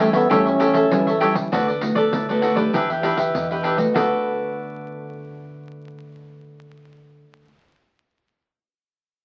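Samba and choro in a playful, sunny mood, cut from a longer piece and heard through the crackle of a very old 78 rpm record. A growling trombone opens with a gritty, breathy jazz-style solo full of scooped notes, then falls silent at 1.2 seconds. Up front, a crisp, picked cavaquinho and a fingerpicked, classical nylon-string guitar carry the accompaniment through the changes. A woody, thumpy pizzicato upright bass sits in the background, while a jingly pandeiro, played with soft hands and sounding close and dry, continues until 4.1 seconds. A wet studio reverb colours the recording.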